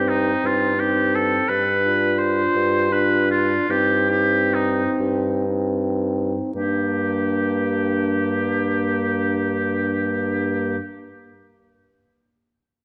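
A melancholic, yearning slow romantic movement for wind quintet opens in G minor with all four parts together: a clear oboe with light vibrato carries the second line up front, over a close-miked clarinet in the background, a smooth-topped French horn in the accompaniment and a dark, punchy bassoon holding G2 in the bass. In a rubato 6/8 of about 36-58 BPM, the music slows from Cm/G through G7 and back, settling on Gm as a new section begins at 6.5 seconds, before every part stops at 10.8 seconds. A moderate stage reverb surrounds the ensemble, and the whole cut from a longer piece is coloured by worn cassette tape with warbly pitch drift.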